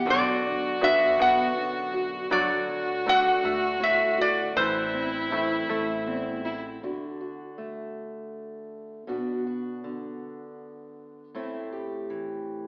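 Heard through a reverberant church or concert hall with a thin, AM-radio character, this excerpt from a longer acoustic folk piece moves at a slow 53 BPM in a steady, straight 6/8, its mood haunting and reflective. Up front, a metal-body resonator slide guitar, played with fingerpicks, carries the melody with a metallic, nasal voice, while a single bowed fiddle adds a dark second line with light vibrato and a smooth top. Beneath them, an open-back banjo picks twangy, plunky arpeggios, and a pizzicato upright bass sits warm and woody in the background. A fingerpicked parlour-style steel-string acoustic guitar supplies the accompaniment through chords of Bm, D and Am. The fuller band drops away by 6.9 s, leaving that guitar alone until the close at 12.7 s.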